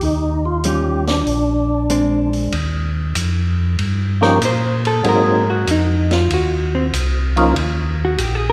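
This soul jazz organ trio excerpt swings at a relaxed 95 BPM in 4/4, with a bluesy, swinging feel. A fat, lightly overdriven tonewheel organ carries the melody through a slow rotary speaker with chorus vibrato, its percussive attack and key click sitting up front until it stops at 7.6 seconds. A second organ holds down the bass with a mellow, round, clean tone and its own chorus vibrato. A vintage acoustic drum kit keeps time on hi-hat, ride and a medium-tuned snare, with dark cymbals and a rolled-off top, sitting mid-forward in the mix. A dark, compressed hollow-body electric guitar joins at 0.7 seconds and takes a fingered solo from 2.5 seconds over changes moving from Eb9 and Bb9 to Ebadd9 and Ab9 before resolving to Eb. A moderate concert hall reverb gives the band a spacious, church-like ambience.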